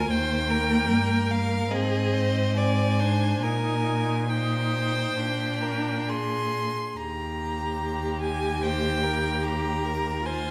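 From the first moment, a string quartet sounds together in a tender, serene slow romantic movement in Eb major, unfolding in 4/4 at a flexible 64 to 76 BPM with a rubato feel. The first violin carries the melody up front, clear and smooth with an even, vibrato-laden tone, while the second violin sings a focused, close-sounding second line beneath it. The viola supplies rich, expressive accompaniment from a more distant position, its bowing colored by vibrato and portamento. Up front, the cello anchors the bass with a focused, vibrant sound and a silky top. The harmony moves from Eb to Ab, back to Eb over a Bb bass at 3.4 seconds, on to Bb and home to Eb at 7.0 seconds. A wet recital-hall reverb with a 1.4-second decay surrounds the ensemble in this brief passage cut from a longer work.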